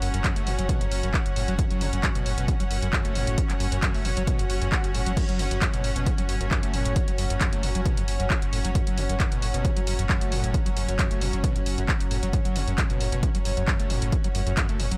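Driving peak-time techno with an industrial, relentless mood, heard as a cut from a longer piece in a straight 4/4 metre. A layered, punchy electronic kick drum, the loudest part, arrives at 0.2 s and anchors the groove, joined by a dry analog drum machine supplying handclaps, hi-hats and crash cymbals, the hats and cymbals pumping against the kick. Underneath, a deep, thick sine sub bass, tube-saturated and low-pass filtered, sustains a single low note. A screaming, squelchy sawtooth acid riff with a resonant filter sweep and fast, decaying notes carries aggressive distortion, subtle chorus and digital delay. Behind it sit an evolving pulse-width-modulated drone with slow attack and long release, and a distant, biting symphonic string section bowing with light vibrato, both pumping with the kick, while a very quiet electronic swell sounds briefly at 4.6 s inside a digital ambience.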